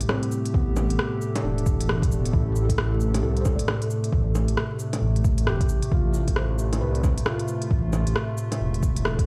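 Vinyl crackle and a large studio reverb surround this ghostly, nocturnal future garage excerpt, which sounds as if played on a big sound system in a bare room. A warbling, nostalgic pad with chorus and sidechain pumping sits up front beside a soft, felt-muted upright piano with audible action noise and tape echo, while an organic electronic kit of bongos, cabasa, crisp hats and rim click sets a swung sixteenth-note feel. At 0.5 s a soft electronic kick and a menacing, saturated detuned saw bass with a filter swell enter, and the harmony moves from Am7 to Fmaj9#11 at 5.9 s.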